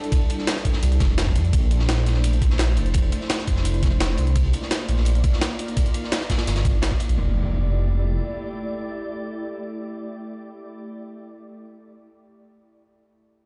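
Uplifting and dreamy, this short cut from a longer liquid drum and bass piece runs at 170 BPM in F major, opening on a glassy, ethereal FM pad with chorus and built-in reverb that pumps against the beat while an overdriven, knocking electronic kick plays alongside two breakbeat kits, one a pitched-up, compressed sampler kit with a high-tuned snare and the other a saturated acoustic kit with dark, rolled-off cymbals. A deep, rumbling detuned saw bass enters at 0.8 s and sits up front through lush chords such as Fmaj13 and Bbmaj9#11. The drums drop out at 7.2 s, where an electronic impact hits as the harmony returns to Fmaj13 and the pad rings on in a stony, bare-room ambience.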